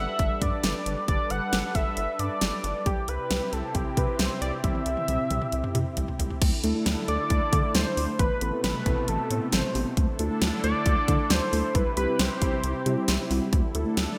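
The punchy, up-front pop drum kit stands out first in this bright, nostalgic synth-pop excerpt at 135 BPM in 4/4, its fat snare, kick, hi-hat, toms and crash cymbal dressed in gated reverb, with a drum fill from 4.6 to 6.4 seconds. A bold, retro octave-doubled sawtooth lead carries the melody with chorus, digital delay and vibrato, while a rubbery, hollow square bass bounces beneath with a resonant filter pluck. A smooth, warbling analog pad holds sustained chords through the changes from Gadd9 and C into Dsus2, Amadd9 and back. From 6.6 seconds, muted, felt-like synth keys join with an intimate, decaying accompaniment. A lush hall reverb and bright 1980s-style digital production give the whole passage a gleaming, retro sheen.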